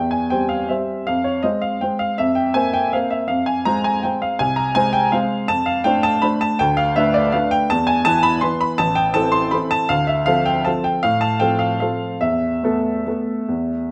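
A clear upright piano carries this short classical waltz alone, its woody, slightly detuned tone sitting up front with a long sustain that lets notes linger. Cut from a longer piece, the passage moves in 3/4 at a flexible, rubato pace of roughly 137 to 173 BPM, and its mood is bittersweet and wistful. Set in F minor, the harmony opens on C/E and settles onto Fm before drifting through F6, Dm69 and Am, closing on Esus4 at 12.2 seconds. The piano ranges from A1 up to C6, spanning deep bass notes through the upper register. Close, detailed microphones capture the instrument's presence, while a moderate concert hall reverb gives it a sense of space around the 13.9-second fragment.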